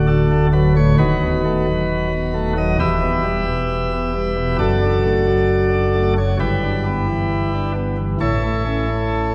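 Rubato phrasing stretches a slow 66 BPM pulse in 4/4 through this brief, reverent chorale fragment in D major, tuned to A4 = 445 Hz. A solo chamber organ plays alone on a full principal chorus with a touch of chiff, moving from D through B7/D#, Em, D/F# and Em7/G before arriving on A at 8.2 seconds. Its chords reach from the deep bass into the upper register and bloom in a long church reverb, heard from further back in the room, which gives the 9.3 seconds a serene, spacious glow.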